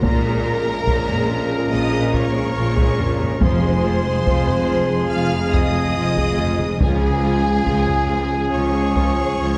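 Heavy-stick taiko drums, with a small-room character, drive this dark, heroic stretch of epic orchestral film score in Bb minor at 71 BPM, cut from a longer piece that moves from Bbm7 through Fm to Db. Lush bowed violins carry the melody high above a second violin line, while a rich viola section and a background cello section, plus woody double basses, fill the middle and low end. Dark French horns hold chords alongside a very quiet, tight trombone section, distant trumpets add stabs, and a concert-hall reverb wraps the whole ensemble.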